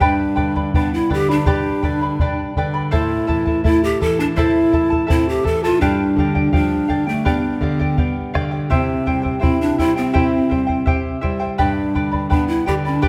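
Andean folk with an earthy, festive mood, played by a small ensemble in an unhurried 4/4 with a straight feel, in a 13.1-second passage cut from a longer piece that moves through G, Am, G7 and C before returning to G. Breathy large cane pan pipes carry the melody up front and close-miked, with vibrato, tongued attacks and audible chiff. Alongside them, a fingerpicked charango adds a shimmering double-string sparkle with some octave-doubled strings, a fingerpicked flamenco guitar supplies warm acoustic support, and a round, dry bombo keeps the pulse, while a moderate stage reverb gives the ensemble a sense of space.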